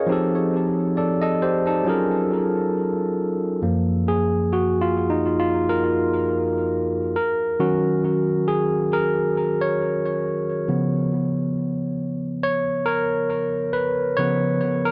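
A slow 68 BPM reggae groove in 4/4 with a gentle swing on the sixteenths sets a sweet, romantic mood in F# major, tuned slightly low to A4 = 438 Hz. A lone tine electric piano carries the whole excerpt, its bright, barky, clean tone coming through a combo amp and sitting up front with tape echo, ranging from F#2 to E#5 and taking a solo from 3.6 seconds as the chords move through F7, F#maj7, D#m7 and C#7. Light reverb and a dark production frame this short passage cut from a longer piece.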